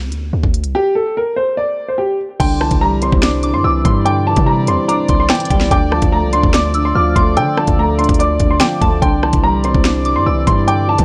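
Dark and tense, this drill-style hip hop passage, cut from a longer piece, moves at 145 BPM in 4/4 with a half-time feel, built on a Csus2 opening before moving through Cadd9 and D minor. A punchy, heavy 808-style bass with a sine core, a noise layer and a fast, decaying attack starts at 0.0 seconds, joined almost at once by an electronic drum kit set up front, with knocking kick, sharp snare, crisp hi-hats, rim clicks and crash cymbal, all roughened by vintage 12-bit sampler grit. At 0.7 seconds a worn, boxy baby grand piano takes the melody up front, mellow and intimate with audible action noise, softened by a low-pass filter and trailed by tape echo. From 2.4 seconds a concert grand adds accompaniment with deep bass and the same filtered, boxy darkness. A tight, clear brass section also enters there with sustained chords, light vibrato and a soft attack in classical style. In the background, a pure, warbling FM synth bell carries a second line, full-bodied and gentle, thickened by chorus and tape echo, all set in a small room with light reverb.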